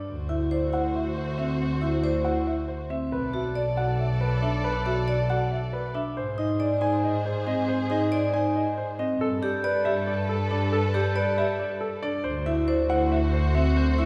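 Pulsing in a straight 7/8, this urgent, hypnotic excerpt of minimalist classical pattern music sets metallic, ringing vibraphone arpeggios, struck with medium hard mallets and heard close and dry, beneath a polished, present grand piano melody, while a smooth bowed chamber string section holds warm sustained chords with vibrato and a clear, intense double bass section carries the bass line through D7, Bm7, Ab, Gadd9 and back to D7, with the whole bathed in a wet scoring-stage reverb that sounds from further back in the room.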